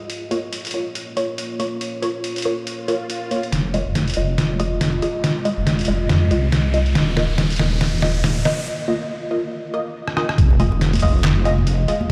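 Heavy and dark, this deep dubstep excerpt in F minor moves at 140 BPM with a swung, half-time feel, opening on a moody, wave-folded ambient pad with chorus and its own reverb under a filter sweep, joined by muted, nasal chord stabs with phaser and dub echo and a gritty, pitched-down trip hop kit of snare, rim click, hi-hat and handclaps that sits up front. An electronic swell rises from 2.8 seconds, and at 3.5 seconds a saturated, wobbling sawtooth bass with chorus arrives alongside a thumpy, very quiet electronic kick, driving a build-up with drum fills, an electronic riser, and a sweeping filter on the stabs, before a break at 8.7 seconds. The drop at 10.4 seconds returns to Fm7 and soon brings in bright, close bongos and congas in the background, all set in a huge stone-room reverb as if played through a big sound system in a bare space.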